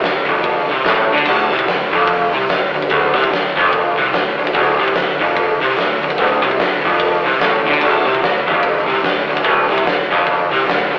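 Brooding and smoky, this swung blues rock and southern rock passage, cut from a longer piece, centres on a crunchy, double-tracked overdriven guitar riff up front, with a growly fuzz bass sitting in the background beneath a big, dark acoustic drum kit of punchy kick, fat snare, hi-hat and crash cymbal, all heard through a rough rehearsal-room recording with warm saturation, a telephone-like tone and moderate studio reverb.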